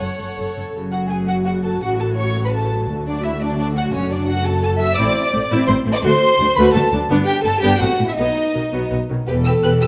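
In a quick 3/4 at 169 BPM with a rubato feel, this restless, urgent classical-period excerpt for string orchestra moves from F# minor into E minor at 5.0 s, its floating, up-front violins carrying the melody over a smooth-topped second violin line, intimate viola accompaniment, a dark cello section in the background and a woody, distant double bass section, all bowed sul tasto, every section but the double basses with a soft touch, in a wet recital hall.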